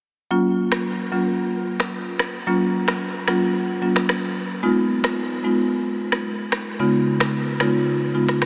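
A marimba played with medium mallets opens this mellow, sultry afrobeats excerpt, its woody rosewood bars sitting up front as accompaniment from 0.3 seconds, ranging from Db3 to F4. Electronic finger snaps and a rim click join at 0.7 seconds, produced and close in the mix, marking a straight 4/4 pulse at 111 BPM. The harmony moves from Gbmaj7 to Fm7b5 at 4.6 seconds and then to Db7 at 6.8 seconds. A huge ambient reverb with a long 7.5-second tail soaks the mix in a dreamy haze. The piece is tuned to A4 = 445 Hz and is cut from a longer work.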